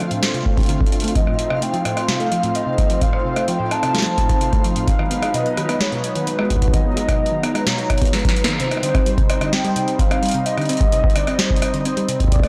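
A blown-out, overdriven recording with light reverb gives this glitchy, melancholic IDM excerpt a saturated, hazy edge, moving in a straight 4/4 at 129 BPM in C melodic minor. A detuned analog pad holds lush, chorused chords while a round, tine-like FM pluck resembling a thumb piano spins mellow arpeggios through chorus and tape echo. A very quiet, flickering granular texture glints above the pluck until 8.6 seconds. Underneath, a booming analog drum machine with a crisp snare, metallic hats and rim clicks that sound re-recorded in a small room is soon joined by a deep, tape-warm electronic kick that sits up front. From 1.2 seconds a warbling, nostalgic lead with tremolo, vibrato and dub echo carries the melody over chords drifting from Dm7 through F7 and Abm7. A drum fill and band accent lead into the closing section on Cmadd9.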